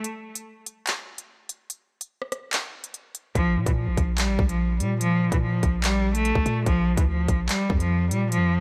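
Dark and ominous, this half-time drill excerpt opens with an electronic drum kit alone for the first 3.4 seconds, its hard-clipped kick, crisp hi-hats, handclaps and rim clicks sitting up front. At 3.4 seconds a clear, focused cello enters up front, a single bowed player with vibrato and a slightly boxy, filtered tone, alongside a deep, mellow 808-style bass whose long sine notes strike fast and then decay. A digital ambience surrounds the short passage, which is cut from a longer piece.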